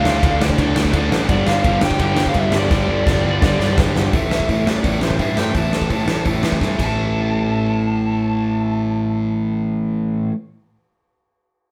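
A straight 4/4 punk rock pulse drives this aggressive, angry excerpt at 169 BPM, with a big acoustic drum kit up front, punchy kick and medium-tuned snare ringing in a bright stone room, playing fills at 2.7 and 6.6 seconds before it stops at 6.9 seconds. Three picked electric guitars grind out riffs over chords moving from Dm to G5 to A5: a crunchy, bright one, a sludgy, dark one sitting in the background, and a double-tracked high-gain one that drops out at 4.1 seconds. A fuzzy, growly picked bass rumbles underneath, while a dark, bluesy distorted lead guitar carries the melody, all sounding like a band playing live together in one room with moderate reverb.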